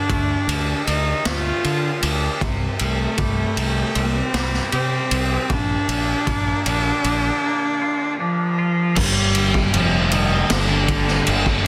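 A bowed cello opens up front with a clear, smooth melody and light vibrato, while a twangy, clean electric guitar picks arpeggios in the background through lush chorus and tape echo. Almost at once a dark, round fuzz bass with overdrive and a raw garage drum kit join in. The kit is punchy and gritty in a small room, with a high-tuned snare, crash and ride cymbals, and soft clipping on the kick. This brooding stretch of quiet-loud alternative rock moves through Dm, Cm and Bb in a straight 4/4. At 9.0 seconds the arpeggios stop and the music lands on Gm as two picked guitars take up a riff: a crunchy overdriven one with phaser in the background, and a very quiet, scooped high-gain one. The cello carries its line to the cut at 11.7 seconds, giving a cathartic lift within a dense, heavily limited modern master.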